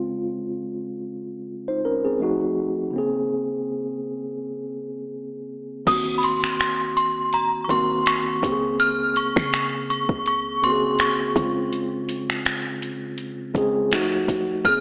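A worn, warbling cassette sound with drifting pitch, a thin AM-radio tone and a lush hall reverb frames this moody, sensual contemporary R&B excerpt in Bb minor at 82 BPM with a light 16th-note swing, where a mellow tine electric piano plays chords like Dbmaj7, F7b9 and Bbm9 alone until 5.9 seconds, when a ringing, inharmonic FM synth chime melody with chorus, phaser, tremolo and digital delay enters up front alongside a deep, boomy 808-style bass in the background and a smooth electronic drum kit with a soft kick, metallic hi-hats, finger snaps and crash cymbal re-recorded in a large room.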